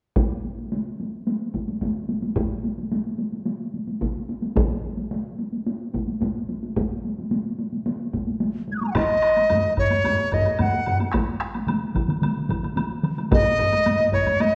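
Japanese traditional taiko ensemble music at 110 BPM in 4/4, ceremonial and driving, cut from a longer piece. Layers of taiko drums struck with hard sticks pound from the start at 0.2 s, distant in a large room. At 9.0 s a woody woodblock joins alongside another taiko group played close with heavy sticks, and a further hard-stick taiko group in a small room enters up front from 11.1 s to 13.2 s. A mellow, pure bamboo dizi with a buzzing membrane, vibrato and tongued notes takes the melody up front from 8.7 s, all soaked in a recital hall reverb and the warbling pitch drift of worn cassette tape.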